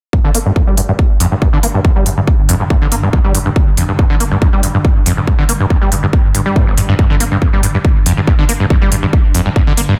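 A heavy, up-front electronic kick drives a straight 4/4 pulse at 140 BPM, with smooth, layered hi-hats that pump against the kick's sidechain from 0.3 seconds. This short cut from a longer, dark peak-time techno track rests on a single G5 chord, tuned slightly sharp to A4 = 441 Hz. The overdriven acid bass carries the riff between G1 and Bb3: a squelchy, gritty sawtooth line with a resonant filter sweep running through its full length, fast-attack decaying notes, saturation, subtle chorus, tape echo and sidechain pumping. From 1.0 seconds, a very quiet swarming drone settles in beneath it, tense and evolving, built from detuned sine voices in unison with a moving notch, slow attack, long release, granular texture and its own built-in reverb. Light reverb and digital ambience frame a dense, heavily limited modern master that keeps the mood dark and driving.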